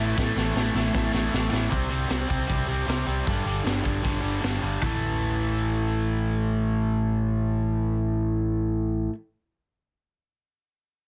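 A straight 4/4 punk rock pulse at 154 BPM drives this upbeat, rebellious excerpt, built on power chords moving from A5 to C5 and G5 before returning to A5. A bright, double-tracked crunchy guitar riff sits up front over a growly, punchy overdriven bass, while a raw garage drum kit with a high-tuned snare and gritty, saturated small-room tone opens with a fill from 0.2 to 1.7 seconds and drops out at 4.9 seconds. A picked lead guitar through a small cranked amp flashes a brief melody in the background until 1.3 seconds, all captured dry in a dense, heavily limited modern master.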